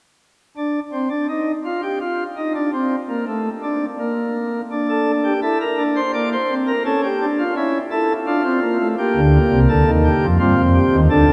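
A cavernous cathedral reverb bathes this solemn, contemplative baroque-style three-part fugue in G minor, played on a solo pipe organ whose sparkling, light flute stops sit up front in a romantic voicing, moving at 84 BPM in 3/4 from 0.6 seconds through a brief cut from a longer piece, with harmony passing through D5, Bbadd9, A/C#, Dm and Gm before settling on Eb69.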